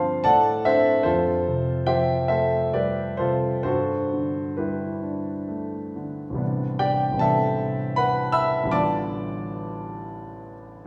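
A concert grand piano sounds from the very start, alone, in a hazy, wistful piece of impressionist classical music in A minor. The solo instrument has a warm, natural tone with deep bass and sits up front, spanning from A1 to E6. Moving in 3/4 with a free, rubato feel, the tempo drifts between 63 and 84 BPM, and the harmony colours its minor key with added-tone chords such as Amadd11, Fadd9 and Gadd9. Around 6.4 seconds the music passes into a new section, and a G9/A chord arrives at 8.7 seconds. A wet recital hall reverb surrounds the piano, as in a church or concert hall, and the recording is a short passage cut from a longer piece.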